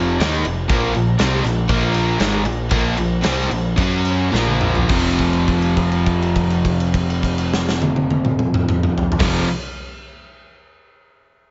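A dark, rolled-off studio sound with moderate large reverb and a small-room ambience gives this heavy, driving hard rock excerpt in F minor a dense, muffled glow. The tempo sits between 103 and 121 BPM in a straight 4/4, and the music slows down from 0.7 to 4.9 seconds over power chords moving from F5 to Bb5, Gb5 and back through Bb5. Three overdriven guitars play the riff in the background: a bright, double-tracked and compressed electric guitar alongside two hollow-bodied semi-hollow guitars. Beneath them, a growling picked electric bass with overdrive adds a round, direct-and-amped low end. Up front, a big acoustic rock kit with a punchy kick, medium-tuned snare, crash and toms enters at 0.2 seconds and plays a fill from 4.3 to 4.9 seconds. At 4.9 seconds the band lands on F5 and holds the note almost to the close of this short cut.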